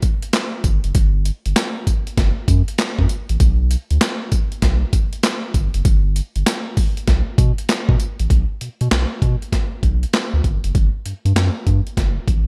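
R&B in a new jack swing style, this slick, confident excerpt swings its sixteenths over a sampler-style breakbeat kit, gritty and compressed, with a thumpy kick, medium-tuned snare, handclaps, hi-hat and tambourine set up front in gated reverb. A round analog bass enters at 0.6 seconds, deep, nasal and dark with a fast attack and sustained tone, sitting just as close. The bright 1980s-style digital production stays dry overall, moving into a new section at 8.3 seconds before the cut at 12.5 seconds.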